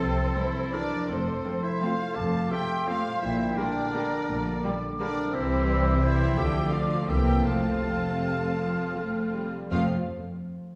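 A lush violin section with a smooth top carries the melody through this sweeping, festive classical fragment in F major, a rubato 3/4 at roughly 151-186 BPM, while a hollow, mellow flute, a punchy oboe, a clear clarinet and a more distant, intense second violin section weave second lines alongside soft-attack French horn chords, ringing fingerpicked harp arpeggios, expressive violas with portamento entering at 0.3 seconds, a rich cello section and a clear, intense double bass section, the ensemble sitting in a wet recital-hall reverb heard from further back in the room.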